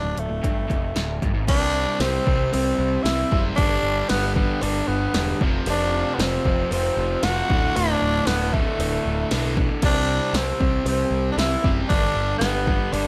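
A growling, raspy tenor saxophone leads up front from 0.0 seconds in this driving, confident classic rock excerpt at 115 BPM, set over a crunchy, double-tracked overdriven guitar riff and a fuzz-soaked picked electric bass, with a punchy analog drum machine of kick, snare, hi-hat and crash cymbal, re-recorded in a small room, arriving at 0.2 seconds. At 1.5 seconds a bright, distorted second guitar adds its own double-tracked riff in the background, along with a very quiet metallic cowbell, as the straight 4/4 groove moves through D5, C5, G and F5. Light reverb gives the mix a touch of space.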